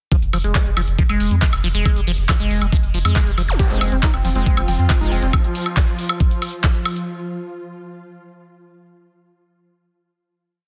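An overdriven, knocking electronic kick pounds four-on-the-floor up front through this short psychedelic trance drop in F minor at 138 BPM, joined by bright programmed hi-hats, handclaps and woodblock, and a deep, round analog bass rolling in sixteenths under a squelchy, resonant acid line that drifts against the bar through phaser, dub echo and sidechain pumping. A zap at 3.5 seconds ushers in a thick, detuned unison lead repeating a vibrato-laden riff over a pedal note, and from 4.2 seconds a swarming, granular drone sustains tense, evolving chords. The intense, alien mood sits in a digital ambience with a dense, heavily limited modern master.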